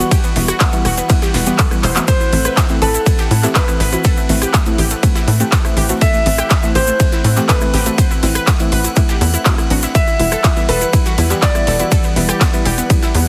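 A dark, intimate grand piano carries the melody in this dreamy, driving progressive house excerpt in A dorian at 122 BPM, opening over a tight, nasal sequencer bass, a very quiet lush pad, a round analog pluck arpeggio, deep mellow chord stabs, a grainy egg shaker and a drifting glass-harmonics texture. From 0.1 seconds a punchy, overdriven electronic kick sits up front alongside a big-room dance kit of crisp hats, handclaps, ride and rim click and a gritty, very quiet sampler-style kit of hi-hat and snare, with a drum fill at 1.8 seconds. The chords move from Em to Am at 2.1 seconds and back to Em at 9.9, with sidechain pumping on the piano, pluck, stabs, bass, texture and big-room hats and cymbals, dub echo on the piano and pluck, and a heavily compressed, radio-like sound under light reverb.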